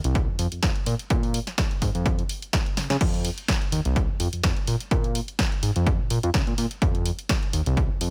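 A swung 4/4 groove at 126 BPM drives this short excerpt of filtered disco house in F minor, with a sensual, funky mood. An overdriven, punchy electronic kick sits up front from 0.2 to 7.9 seconds, carrying the roomy character of a large space it was re-recorded in. A layered house drum kit supplies hi-hat, crash cymbal and a punchy snare, with sidechain pumping on the hats and cymbals, and a drum fill arrives at 2.8 seconds. The fat analog bass, a thick, detuned sawtooth with tube saturation, runs the whole clip from C2 to Db3, sustained and up front, pumping with sidechain compression while a low-pass filter sweeps its tone. The overall sound is dry and close, carrying little reverb.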